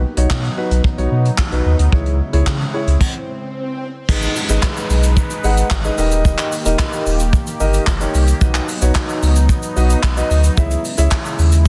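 A round, sine-like sub bass sits up front in this energetic, confident dance-pop excerpt in G# minor at 111 BPM, its deep, fast-attack notes pumping against the sidechain. A vintage brush drum kit drives the straight 4/4 groove with a punchy kick, a medium-tuned snare, dark cymbals, hi-hat, shaker and handclaps, all with a rolled-off top and a natural studio-room feel. A dark, mellow concert grand piano plays accompaniment in its middle register. Beneath it, a bright, detuned sawtooth pad with chorus holds sustained chords that evolve through a resonant filter sweep. An electronic swell rises from 2.7 s into a brief stop at 3.0 s, and a barely audible, crisp group handclap joins at 4.6 s as the harmony moves through B, C#m, G#m and D#. The dense, heavily limited master and studio reverb give it a polished, modern sheen.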